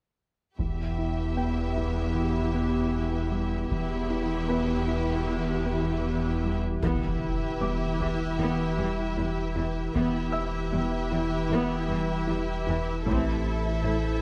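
A steady, straight 4/4 pulse carries this brooding, futuristic cue, cut from a longer hybrid orchestral and electronic film score. Very quiet taiko with heavy sticks marks the opening, returns at 6.8 seconds with a background electronic impact, and comes back at 13.1 seconds as the harmony moves to a new chord. Low down, a deep, punchy sine sub bass with a pitch-drop attack sits alongside a lush cello section, while a focused viola section plays accompaniment through a low-pass filter and a rich, vibrato-laden violin section carries a smooth second line above. A warbling, nostalgic lo-fi pad of detuned square and triangle waves, with chorus and its own reverb, holds sustained chords, and a round, tine-like FM pluck with tape echo plays arpeggios in the background. A clear but worn baby grand piano adds intimate, very quiet texture with audible action noise, while a filter sweep shapes the first half and the second half becomes a build-up, heard in a moderate scoring-stage room.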